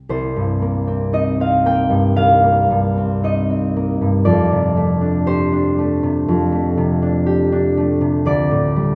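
Bathed in a wet church reverb with a 3.3-second decay, this short, wistful classical piece features a solo concert harp, bright, thumb-plucked and up front, ringing across C2 to G5 at a gentle, rubato 56-60 BPM in C dorian as its harmony moves from Cm7 to F69 at 4.3 seconds.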